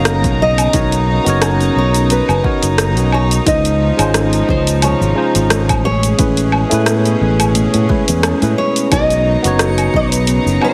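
Sunny and smooth, this sunset chillout excerpt rides a gently swung sixteenth-note groove under lush maj9 harmony. A full-bodied, fingerpicked nylon-string guitar carries the melody through a touch of delay, while a barky tine electric piano, clean through a combo amp with digital delay, fills in the accompaniment and a rich chamber string section holds earthy, bowed chords with light vibrato. A growly, punchy fingered electric bass sits up front, and a buzzing, woody kalimba spins arpeggios through digital delay in the background. An overdriven deep house kit of cabasa, hi-hat, rim click and woodblock pairs with a deep electronic kick that drops out at 8.2 seconds before returning, and at 9.3 seconds a twinkling granular texture adds a faint octave-up shimmer. The whole mix sits in a moderate hall reverb and is heavily compressed for a dense, radio-ready sound.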